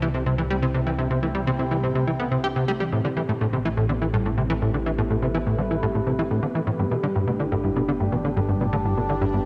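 A steady, straight 4/4 pulse drives this mysterious, cosmic stretch of ambient, sequencer-driven space music, a brief cut from a longer piece. Up front, a punchy, funky analog bass riff with a fast attack and decaying filter pluck carries the groove through tape echo. Behind it, a soft, round pluck plays gentle arpeggios, dark and full-bodied with a noise layer, chorus and tape echo, fading in over the whole passage. A sweeping, resonant pad built on wave-folded tones holds sustained chords with a slow attack, a filter swell, chorus and phaser, and it also fades in, while a detuned analog drone with pulse-width modulation hums low underneath. The chords move from C to Am7 at 2.9 s and on to G at 6.8 s, all set in a concert-hall reverb with the soft haze of cassette tape.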